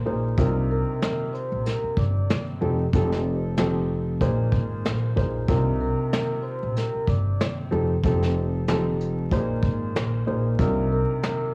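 A swung, up-front brush kit with a tight kick, rim clicks and sampler grit drives this moody, tough boom-bap hip-hop cut from a longer piece, as woody pizzicato upright bass and a mellow, dark upright piano with cassette-tape coloring cycle through Cm11, F9 and Bb9sus4 beneath a ringing, metallic vibraphone melody with slow motor vibrato, all set in a small room with vinyl crackle and home-cassette character.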